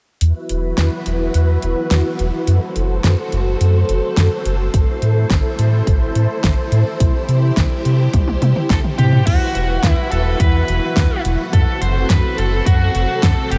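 A straight 4/4 pulse at 106 BPM drives this cinematic, nocturnal synthwave piece in E minor, with a tape-warm pop drum kit of fat snare, metallic hats, crash and toms running throughout and a punchy electronic kick joining at 4.7 s. A round, deep analog bass sits up front beneath lush, slow-attack string machine chords with ensemble chorus; both pump with sidechain and carry filter sweeps through the opening, before a drum fill leads into a new section at 9.3 s. A smooth overdriven lead guitar enters at 8.7 s with vintage 12-bit sampler grit and tape echo, and the whole mix is dreamy and soaked in huge ambient reverb.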